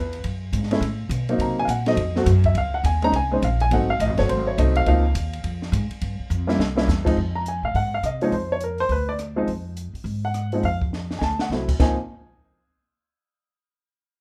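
A playful jazz piano trio excerpt in swung 4/4, where an intimate baby grand with audible action noise and short sustain carries the melody up front over a woody, thumpy pizzicato upright bass with steel strings, while a compact cocktail kit with a high-tuned snare, punchy kick and rolled-off top sits behind them, adding drum fills at 6.3 and 10.9 seconds as the harmony moves through colourful extended chords in light reverb.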